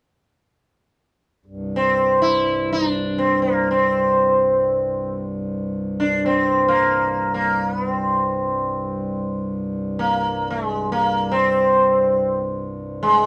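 A dark, warm studio sound with a moist reverb frames this short, meditative passage of Hindustani classical music from a longer piece, unfolding in free time with a devotional calm. A reedy pedal harmonium sets a low, breathing drone at 1.5 seconds, sitting quietly in a boxy small room, and the sitar enters just after at 1.8 seconds. The sitar carries the melody up front with a round, buzzing, plectrum-plucked tone and a shimmer of sympathetic strings.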